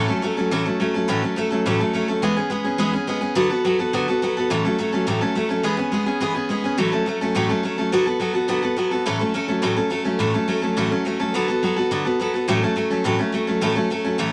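A bright, full-bodied picked steel-string dreadnought acoustic guitar plays alone and up front through the whole 14.3 seconds of this retro, rowdy rock clip cut from a longer piece, moving through A6, E6 and D6 chords in a straight 4/4 feel, with a phrase stated and then repeated from 6.8 seconds, all wrapped in light reverb.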